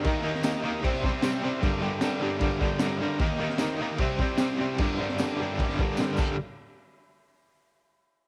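A straight 4/4 pulse at 152 BPM drives this gritty, swaggering garage rock clip in G minor, cut from a longer piece. A crunchy breakbeat drum kit, recorded acoustically in a small room, supplies a punchy kick, a high-tuned snare and dark cymbals, with a smooth, rolled-off top, and it closes its run with a fill from 6.0 seconds. Up front, a bright, overdriven electric guitar plays a picked, double-tracked riff colored by tremolo and cassette tape, cycling over Eb, C and Gm. A vintage, buzzy combo organ holds very quiet, clean sustained chords with light vibrato, adding a fill between 2.0 and 3.2 seconds. A jingly tambourine sits in the background, and the mix carries light reverb and the small-room ambience of a home cassette recording before the parts stop around 6.4 seconds and the harmony drops out.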